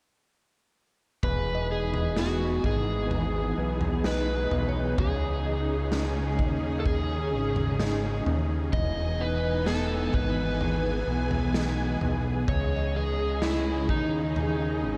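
This blissful, floating dream pop passage, cut from a longer piece, opens at 1.2 s with the full band entering together at a slow 64 BPM in E major, drifting between Emaj7 and C#sus2. An overdriven slide guitar, played with fingerpicks, carries the melody up front, its tone touched by subtle chorus and tape echo. Beneath it, a vintage string machine voicing violas holds soft-attack sawtooth chords with ensemble chorus, while a clean, fingered electric guitar plays dark arpeggios in the background through ensemble chorus and tape echo. A fat, detuned sawtooth bass with saturation and a filter sweep sits up front, joined by a raw garage drum kit with a punchy kick, a medium-tuned snare and toms, heard in a bright stone room with a rolled-off top. A very quiet, crystalline FM synth bell adds a faint shimmer from 1.5 s and returns at 12.8 s, and the whole mix is soaked in a huge ambient reverb that gives it a dreamy haze.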